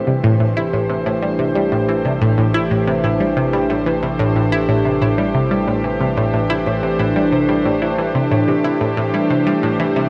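A lush, wet hall reverb surrounds this cosmic, hypnotic piece of ambient, sequencer-driven space music, and its top end stays soft and rounded. It moves at 91 BPM in 4/4 with a straight feel, resting on an Am7 chord in A minor, with tuning set to A4 = 445 Hz. An evolving wavetable pad sits up front with sustained chords from E3 to C5, its vintage, full-bodied tone morphing and warbling through chorus, built-in reverb and shimmer reverb. Beside it, an analog pluck enters at 0.1 seconds with a riff between A2 and E4, bright and nasal with a sawtooth edge and a noise layer, coloured by chorus, phaser, tape echo and shimmer reverb. Deep in the background, a round, dark analog bass holds A1 and fades in across the whole passage, which is cut from a longer piece.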